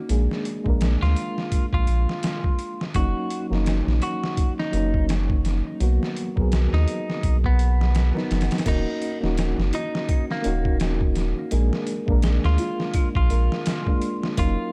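A dark, brooding trip hop excerpt at 84 BPM in Eb minor, built on a gritty, pitched-down sampler-style drum kit with a thumpy kick and compressed snare and hats, sitting up front beside a deep, round sine sub bass. A reedy electric piano with tremolo and tape echo carries the chords, while a clean, picked semi-hollow guitar, also treated with tape echo, takes the melody from 1.0 seconds. At 8.7 seconds a delicate, tinkling music box, slightly out of tune, enters in the background with arpeggios, all within a dry, dark production.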